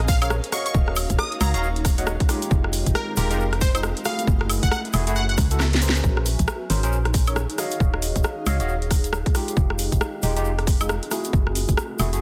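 A dense, heavily limited mix with vinyl crackle and light reverb carries this bouncy, late-night two-step UK garage cut in Bb minor at 136 BPM, swung on the 16ths, where a hollow, organ-like FM bass with tube saturation and a tight, up-front electronic kick anchor a house kit of metallic hats, rim clicks, woodblock and a cracking soft-clipped snare, while a grainy egg shaker and a cloudy granular pad with sidechain pumping sit in the background, barky overdriven tine electric-piano stabs with lush chorus and delay run throughout, and a punchy, catchy detuned unison lead through phaser and delay plays alongside a silky, warbling string machine for the opening drop before both stop, the kick drops out and a drum fill arrives at 5.6 seconds, leading into the second section over Bbm9, Ebm9, Fm9 and Gbm9 chords.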